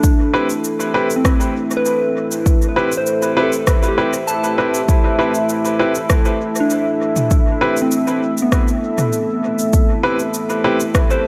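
Ambient dub at 99 BPM in A minor, this hazy, deep passage is cut from a longer piece and rests on a single Am7 chord, anchored by an up-front, overdriven electronic kick and a produced drum kit of cabasa, rim click and toms soaked in studio reverb and dub echo. A moody sawtooth pad with a sub octave and slow attack holds sustained chords under chorus, while a pure FM bell plays gentle, decaying arpeggios through dub echo. From 0.3 seconds a woody upright piano with audible action noise adds brilliant stabs, all set in an echo-chamber reverb of 2.4 seconds.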